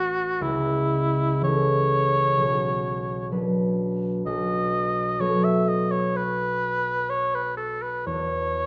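Romantic classical music for oboe and harp, lyrical and tender, moves with a flexible rubato feel through this short passage cut from a longer piece and tuned to A4 = 435 Hz. Up front, the warm solo oboe sings the melody with light vibrato and a smooth top, while the mellow concert harp accompanies with ringing, thumb-plucked notes reaching down into its low register. Both are heard throughout the 8.7 seconds, and a wet recital hall reverb with a 1.6-second decay surrounds them.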